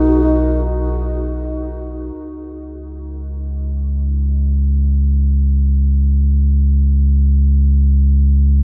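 Floating in free time, this short ambient fragment, cut from a longer piece, feels melancholic and reflective. A mellow, hollow alto flute sounds only briefly at the very start, a single airy, straight-toned note with a crisp attack that vanishes by 0.6 s into a diffuse ambient delay. Beneath it, a deep, round sub bass with a sine-like purity sits up front for the full 8.6 seconds, its fast attack giving way to long sustained tones colored by tube saturation. A single chord underpins the opening before the harmony falls away at 2.2 s, leaving the low notes suspended on their own. The whole recording carries a worn cassette character, with warbly pitch drift and a light reverb that places the sound in a small room.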